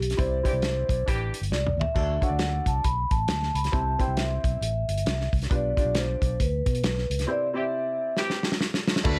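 Lightly reverberant, this joyful, swinging 1960s-style soul clip sets a mellow, ringing soft-mallet vibraphone melody over round, dark fingered electric bass, an up-front small-room drum kit with dusky cymbals, a tight kick and fills, and a woody, slightly detuned upright piano, while a vintage jazz-style horn section adds a second line at 0.4 and again from 7.5 seconds, and a lush, distant string section surfaces only at 9.1 seconds.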